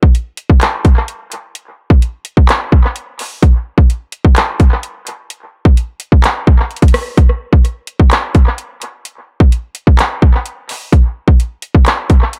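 This hip hop passage, cut from a longer piece, rides a menacing, brooding half-time feel at 128 BPM in 4/4, carried entirely by an electronic trap drum kit playing from 0.0 to 12.4 seconds. The produced kit sits up front with a hard-clipped kick, metallic hi-hats, handclaps and rim clicks, all given a tape-warm character and fed through analog delay. Light reverb and an echo-heavy mix leave the beat hanging in an echoing space.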